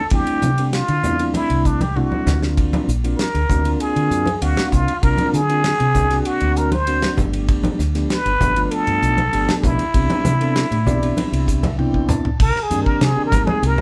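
A straight 4/4 groove at 98 BPM drives this funky, soaring electric jazz fusion in C major, cut from a longer piece, with a damped 70s kit of dry snare and tight kick, soft-handed congas ringing in the background, and a woody, round fretless bass underneath. Up front, a plunger-muted trumpet carries the melody with a raspy, growling wah-wah tone, scooped notes and light vibrato, while a flute-like tonewheel organ comps through a slow rotary speaker over chords moving from Fmaj13 through D7alt and G9 to Cmaj9. After a drum fill at 2.0 seconds and an organ fill from 10.6 seconds, the harmony shifts to Cm9 at 12.4 seconds as the trumpet breaks into a short solo, the whole band heard playing live in a small, reverberant room.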